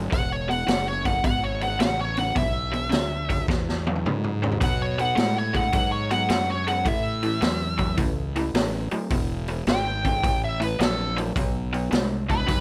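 A smooth, overdriven lead guitar with wah sits up front, singing its melody high over a gritty, raunchy blues rock groove with a southern rock swagger and a swung feel. Beneath it, a bright, lo-fi, double-tracked garage guitar drives the riff while a fuzzed, growly fingered bass holds down the low end, and a saturated small-room drum kit with a boomy kick and rolled-off top breaks into a fill from 3.5 to 4.6 seconds. The sound is dry and close, and the passage is cut from a longer piece.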